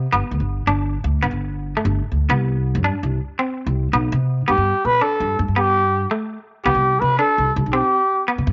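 A rolling 12/8 pulse drives this joyful, danceable highlife guitar band fragment, cut from a longer piece. A woody pizzicato upright bass and a twangy, slightly broken-up picked electric guitar sit up front from the start, moving between two chords beneath a moderate spring reverb and a rolled-off top end. At 4.5 seconds a raspy, growling jazz-style trumpet enters for a short solo, with vibrato and scooped notes, sounding roomy and distant.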